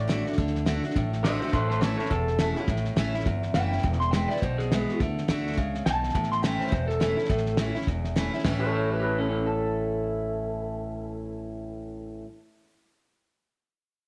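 Upbeat and rowdy, this rockabilly cut swings at 208 BPM in A mixolydian, moving through D, A and E chords. A twangy, slightly broken-up electric guitar through a small old amp carries the melody with tape echo, while a warm, freshly strung acoustic guitar picks the accompaniment up front and a woody, thumpy pizzicato upright bass holds down the low end. A dry, dark, cloth-damped drum kit with a fat snare and tight kick drops out at 8.5 s, and the whole band sits in a moderate echo chamber.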